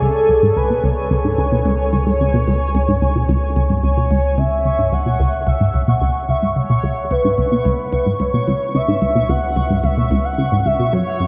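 A squelchy, detuned sawtooth pluck sits up front in this ambient, sequencer-driven space music, repeating a low riff with a fast attack, short decay and a moving notch, colored by chorus, phaser and delay. Above it, a mellow, horn-like synth lead carries the melody with a soft attack, sustained notes and vibrato, treated with phaser, analog chorus and delay. Underneath, a round, deep analog bass holds a single low note with a dark, wave-folded tone. High up and set well back, a pulsing, tempo-synced texture of detuned unison triangle voices swells in on a slow attack and lingers on a long release, bathed in chorus and its own reverb. The whole 11.3-second cut rests on one minor chord in a straight four-beat metre, and the dreamy mix is soaked in a huge, lingering reverb that gives it an expansive, cosmic mood.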